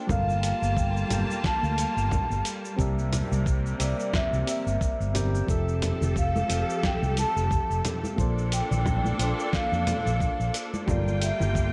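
Blissful sunset chillout with a swung sixteenth feel, where a metallic, airy soft-mallet vibraphone carries the melody through tape echo over mellow, chorused electric-piano-like synth keys and a lush, bowed symphonic string section. Beneath them sit a dark, round, up-front fretless bass and a gritty, tape-colored sampler-style soul kit with a fat snare, hi-hat, cabasa and congas. A thumpy electronic kick adds weight, and a second set of soft-handed acoustic congas joins in the background at 6.0 s, in a dry mix with little reverb.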